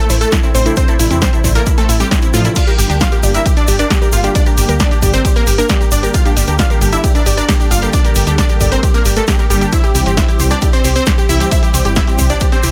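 Uplifting trance at 134 BPM in an emotional, driving mood, moving from Am to Gm, where a bright, detuned sawtooth pluck with phaser and tape echo carries the melody. A catchy, full-bodied unison lead plays a second line and a wave-folded, ring-modulated pluck spins arpeggios in the background. A dark, round FM bass, a silky, chorused analog string pad and those three synth parts all pump against the up-front, dry electronic kick, while a punchy analog drum machine supplies snare, hi-hat, ride and crash and a grainy egg shaker adds texture.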